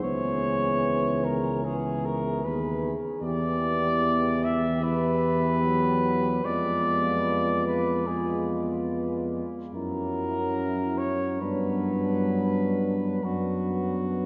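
In a freely bending rubato 4/4, this elegiac, yearning classical hymn for brass band, cut from a longer piece, sets a distant, roomy flugelhorn melody up front over a background of a warm French horn section with light vibrato on the second line, a dark euphonium and a trombone in accompaniment, and a punchy tuba bass, all steeped in a wet cathedral reverb as the harmony moves from C#m7 through Fdim7 and F#7 to close on Bm/F# at 13.2 seconds.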